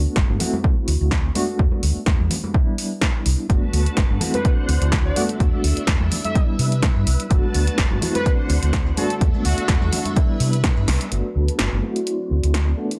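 A swung 126 BPM groove of punchy, tape-warm electronic kick and analog drum-machine snare and hats drives this funky, sunny filtered disco house cut in D mixolydian, where a round, dark fingered bass, reedy electric piano with fast tremolo and phaser, and background maracas and congas pump under filter sweeps, lush sawtooth string-machine chords join at 3.5 seconds, a bold, nasal analog synth-brass melody with chorus and delay runs from 4.3 to 10.1 seconds, and a drum fill with a band accent at 10.9 seconds leads into a new section.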